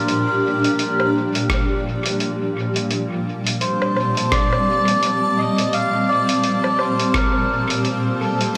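Soaked in a lush hall reverb, this dreamy, meditative ambient dub excerpt moves at 85 BPM with a lightly swung 16th-note feel, resting on a single Gm7 chord in G minor. A blurred, evolving granular cloud pad holds sustained chords up front, while a reedy, breathy melodica carries the melody between A4 and F5 through dub echo. A muffled, pitched-down lo-fi sampler-style drum kit of hi-hat, rim click and woodblock, also sent into dub echo, plays throughout, and a deep analog electronic kick drum joins at 1.5 seconds and stops at 7.3 seconds.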